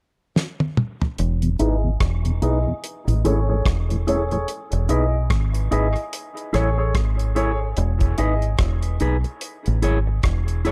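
Swung sixteenths at a laid-back 73 BPM drive this spacious dub reggae piece in E major, where a damped, fat-snared 70s drum kit fills from 0.4 seconds before a deep, foam-muted fingered bass enters up front at 1.2 seconds, a lightly overdriven tonewheel organ with chorus vibrato and slow rotary speaker drifts through until 4.4 seconds, and a clean, dark electric guitar and natural-sounding grand piano stabs trail dub echo through low-pass filters over alternating Emaj7 and Amaj7 chords, set in a small room with light reverb and a filter sweep running to the close.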